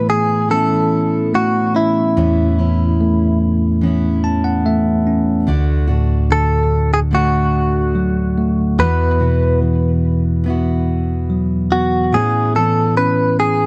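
A heartfelt pop ballad fragment in a dry, close 1970s-style studio sound, where a twangy, direct-recorded clean electric guitar carries the melody with tape echo up front, a bell-like tine electric piano supplies bright accompaniment and a fill from 3.8 to 5.5 seconds, and a full-bodied steel-string acoustic guitar picks arpeggios with audible finger squeak beneath them, moving from Aadd9 through D and Esus2 back to Aadd9.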